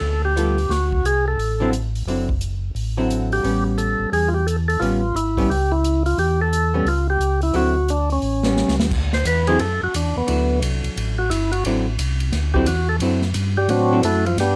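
A greasy, soulful soul jazz organ trio opens on tonewheel organ, with a percussive, full-bodied melody voice showing key click and second-harmonic percussion, over a mellow, round organ bass line in the low register. Both organ parts sit up front and turn through a slow rotary speaker. A moment later a dark, clean, picked hollow-body archtop guitar joins in accompaniment, along with a swinging big-band drum kit in an airy hall, with dark cymbals, a medium-tuned snare and a punchy kick. The harmony moves through rich ninth chords under a swing feel, all in light reverb. A short drum fill at 8.6 seconds leads into a second section at 8.9 seconds, where the organ takes a solo that runs until this cut from a longer piece ends at 14.6 seconds.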